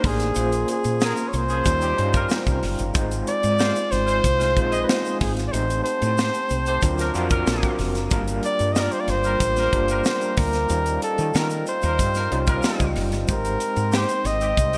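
Nocturnal and bittersweet, this polished 1980s jazz-funk pop excerpt puts a close-miked flugelhorn melody with light vibrato and delay up front over a barky, overdriven tine electric piano with tremolo and lush chorus, a woody, round fretless bass, and a crisp fusion drum kit with a punchy kick, high-tuned snare and gated reverb, while a glassy, ethereal glass harmonica holds background chords, a grainy tube shaker enters at 0.2 seconds, and a mellow horn section adds a second line from 1.0 seconds, all framed by bright digital production and plate reverb.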